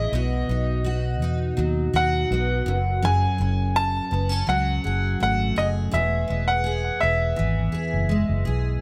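Sunny and heartfelt, this short pop excerpt in E major moves at a straight 83 BPM, with a clear, woody upright piano carrying the melody through a delay, a double-tracked, full-bodied jumbo steel-string acoustic guitar picking out the accompaniment, and a dark, round, foam-muted vintage electric bass anchoring the low end, all set up front in a small room with light reverb over chords moving from B to F#madd9 and on to E.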